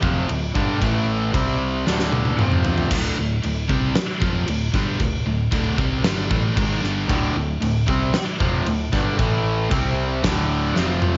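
A straight 4/4 pulse at 115 BPM drives this powerful, anthemic hard rock excerpt, cut from a longer piece and built on power chords moving among D5, A5, C5 and F5. A gated 80s drum kit sits up front with a punchy kick, fat snare and bright cymbals in a bright stone room, and it rolls into fills at 1.9 and 10.8 seconds. Three picked electric guitars carry the riff: a biting, overdriven one touched with spring reverb, a high-gain, double-tracked distorted one tucked in the background, and a tight, distorted one that drops out after 2.9 seconds and returns at 7.1. Underneath, a hollow-body short-scale electric bass, fingered and amped, adds a dark, round low end. The whole thing has the top-limited character of a home cassette recording, with only light reverb around it.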